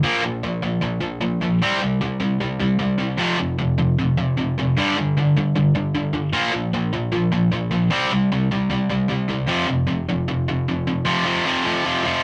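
Rebellious and upbeat, this brief punk fragment at 152 BPM in a straight 4/4 features a lone bright, double-tracked electric guitar, picked and up front with overdrive, cycling through Bb5, C5, F5 and G5 power chords before a short change of section near 11.1 seconds, all caught in a rough rehearsal-room recording with tube saturation and a moderate studio reverb.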